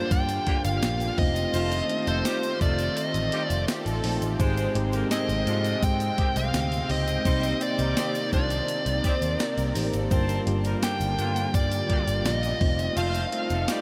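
At 84 BPM in a straight 4/4, a clean 12-bit digital drum machine sets a thumpy kick, medium-tuned snare, hi-hat and tambourine under this dramatic, nostalgic 1980s-style pop excerpt, with a grainy tube shaker sitting distant in the background. A vintage muted picked electric bass, dark and round through an amp, holds the low end as the harmony moves from Gm7 and F7 through Abmaj7 and Cm7 before returning to Gm7 and F7. Up front, an overdriven lead guitar carries the melody with a smooth, shadowy tone and tape echo, while a tine electric piano with medium tremolo plays accompaniment through a combo amp. A clear, tight horn section adds stabs with light vibrato and tape echo, and a swirling, airy sawtooth pad with phaser and chorus sustains chords in the background. From 3.7 s a lush, very quiet violin section joins with a bowed second line, and the whole mix is soaked in a huge ambient reverb that gives it a dreamy haze.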